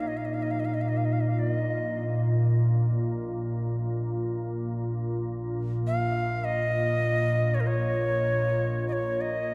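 An airy cedar flute with a crisp chiff and diffuse delay carries the melody up front in this spacious, haunting stretch of free-time world meditation music, over a low, detuned organ-like pad drone thickened by ensemble chorus and its own reverb, while a faint, ethereal glass harmonica adds slow-blooming texture, all within a vast cathedral reverb.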